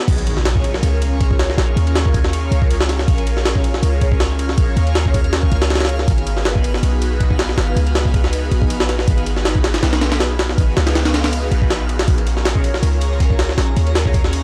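Drum and bass with a jungle edge, raw and frenetic at 160 BPM in Bb phrygian, this piece drops straight in at 0.1 seconds as a gritty, pitched-up sampler kit with a thumpy kick and high-tuned snare sits up front beside a deep, boomy 808-style bass, while an airy, breathy pad holds sustained chords through chorus and phaser, moving from Bbm7 to Abm7 at 6.1 seconds and back to Bbm7 at 12.1 seconds. A twinkling granular texture with octave-up shimmer and built-in reverb sparkles in the background, and very quiet electronic impacts and noise sweeps mark the opening and the stretch around 11.0 seconds. At 12.1 seconds a very quiet, dark, saturated breakbeat kit of hi-hat and snare joins, and the whole cut carries a dry hardware grit with transformer saturation and vinyl crackle.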